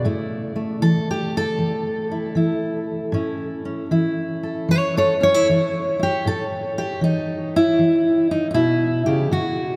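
Gritty and laid-back, this acoustic country blues fragment is cut from a longer piece and moves at an easy swung pace in 4/4. A single fingerpicked steel-string acoustic guitar carries everything, its jumbo body giving a woody, full-bodied tone with the worn character of old strings. The guitar sits up front, ranging from A2 up to C#5, and rests on an A chord through the opening passage. At 6.2 seconds the music moves into a new section built on A5, and the guitar plays on until the close at 9.8 seconds. A heavy cathedral reverb surrounds the instrument, placing it in a vast, echoing space where each note hangs long after it is struck.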